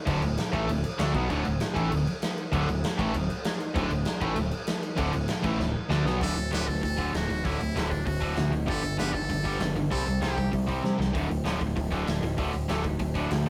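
This rough rehearsal-room recording has light reverb and a saturated glow, and it opens mid-stream as part of a longer punk rock piece with a rowdy, rebellious mood. A biting, double-tracked overdriven guitar sits up front and drives the riff from start to finish. Behind it, a thick, double-tracked fuzz guitar also plays a riff in the background until 6.2 seconds. A growling, overdriven picked bass and a big, natural-sounding acoustic drum kit, with a punchy kick and medium-tuned snare, keep the straight 4/4 pulse charging ahead, and drum fills mark the turns between passages. At 6.2 seconds a close-miked trumpet with a metal mute takes a buzzy, thin pop-style solo with light vibrato and scooped notes over chords moving from D through G5 and C5. The trumpet drops out at 10.5 seconds, and the band returns to a D5 power chord.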